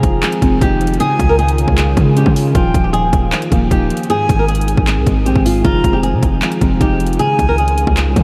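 The trap beat rides a half-time feel at 155 BPM in 4/4, with an overdriven electronic kit of hard-clipped kick, bright hi-hats and handclaps sitting up front beside a punchy, heavy 808-style bass with a noise layer and fast, decaying notes. Over this hip hop groove in F minor, a fingerpicked acoustic flamenco guitar carries the melody between F4 and Bb4, colored by subtle chorus, a low-pass filter and analog delay. Warbling, nostalgic lo-fi synth keys and a deep, moody analog pad with a slow attack and long release sit in the background, over a progression that moves from Fm7 through Dbadd9, Ebadd9 and Ab. At 1.0 s an airy silver concert flute enters quietly with vibrato and analog delay, tracing a high second line until 7.9 s. Soaked in a huge ambient reverb and dusted with vinyl crackle, this 8.2-second passage feels dreamy yet menacing and eerie.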